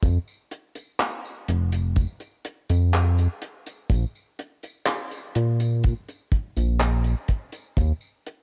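This short vaporwave fragment, cut from a longer piece, opens at once with a chorused synth bass, a kick drum and a damped 70s drum kit all sounding together at a slow 62 BPM in a straight 4/4, setting a nostalgic, hazy mood. The bass is retro and glossy, a nasal blend of pulse and sawtooth tones with pulse-width modulation, a filter pluck with fast attack and sustained notes, and tube saturation, sitting up front while it ranges from F1 to Bb2. The kick is acoustic, tight and smooth, with a rolled-off top and a touch of studio reverb, placed prominently alongside the bass. Beneath them, the kit of handclaps, hi-hat and tambourine sits lower in the balance, its dry, dusky tone also lightly treated with studio reverb. The overall production is dark and warm with very little room sound, and the parts drop away in turn, the bass at 7.9 seconds, the kick at 8.0 seconds and the kit at 8.4 seconds.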